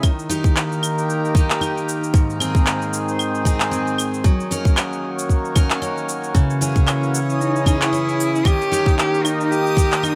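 A tight, tape-warm electronic kick drives this playful, lightly swung folktronica piece beneath picked, full-bodied steel-string guitar arpeggios with delay, reedy, breathing harmonium chords and electronic claves, shaker and handclaps, while an expressive bowed cello with vibrato, portamento and delay takes the melody at 6.9 seconds and a dreamy, reversed, granular texture drifts in far behind at 7.3 seconds.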